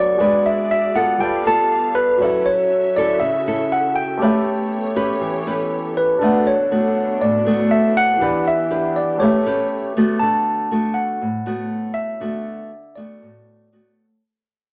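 Bossa nova with a breezy, relaxed mood, taken from a longer piece in a straight 4/4 feel. A clean tine electric piano carries the melody up front, its tone coloured by its built-in speakers, while a small, fingerpicked nylon-string guitar sits close beside it in the accompaniment. A grand piano adds warm, present chords with long sustain, and a muted string section plays bowed, con sordino chords that sound dark, veiled and distant, with vibrato and a soft attack. The harmony moves through rich seventh and ninth chords, settling on D6 at 10.2 seconds, where the grand piano and strings stop and the guitar and electric piano carry on into a fade-out that ends at 14.2 seconds. A wet small-room reverb and a layer of vinyl crackle give the recording a worn, intimate character.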